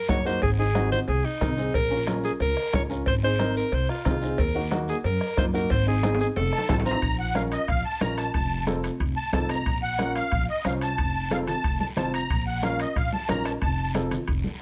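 A driving, straight cumbia groove at 182 BPM in 4/4 rolls from a soft-beater bombo, ringing congas and cowbell and timbales set in the background, and a raspy, dry guiro, under a woody pizzicato upright bass up front and a slightly detuned vintage upright piano, while a bright, punchy alto saxophone with vibrato carries the passionate melody until 6.8 s, a drum fill leads into Bb harmonic minor, and a reedy, shimmering musette accordion entering at 6.5 s takes the solo from 7.0 s in this lightly reverberant excerpt cut from a longer piece.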